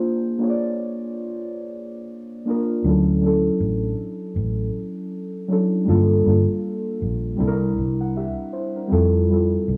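A cassette-softened, small-room sound frames this cosy, mellow lo-fi hip hop excerpt, where muted, felt-like synth keys with a dark, chorused, filtered tone play softly up front over a Bb9 chord before a round, foam-muted vintage fingered electric bass enters at 2.8 s beneath a Dmaj7, Gm7, C7 and Fmaj7 progression with a gentle swing.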